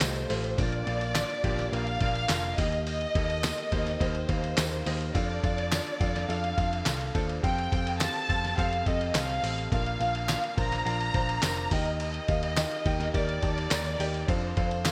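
At 105 BPM in a straight 4/4, this anthemic, hopeful piano-driven pop excerpt pairs a gritty, up-front sampler-style drum kit with gated reverb, handclaps and a thumpy kick, a round, foam-muted picked electric bass, a grand piano with analog chorus carrying the accompaniment, a dark, woody violin section singing the lush bowed melody with vibrato, a jingly tambourine in the background, and a barely audible electronic downlifter from 0.2 to 2.9 seconds, all set in a lush hall reverb with bright 1980s-style digital sheen over chords moving from Fadd9 through Bb and Eb to Dm/F.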